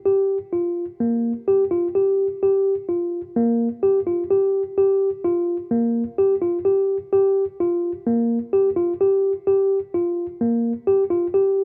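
A worn tine electric piano, slightly out of tune and lightly overdriven through a combo amp, sits up front and plays alone from 0.1 seconds to 11.6 seconds in this brooding, intricate progressive instrumental. The piece moves at 128 BPM in 5/4 with a straight feel, set in G minor and tuned to A4 = 439 Hz. The piano stays in a compact middle range, from Bb3 to G4. A short opening section gives way at 3.4 seconds to a second section that carries through to the close of this cut from a longer piece. Light reverb and a digital ambience frame the sound in a rough home demo mix.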